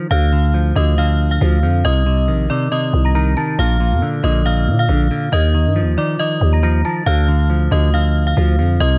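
Cold and dark, this half-time drill hip hop excerpt at 138 BPM in D phrygian pairs a dark, clean semi-hollow electric guitar, up front and filtered, with a ringing, inharmonic FM bell melody treated with chorus and a low-pass filter, all over a growling, buzzy 808-style bass, moving through Dm, Cm7, Bb and Ebsus2 before returning to Dm in a dark, warm digital ambience flecked with vinyl crackle.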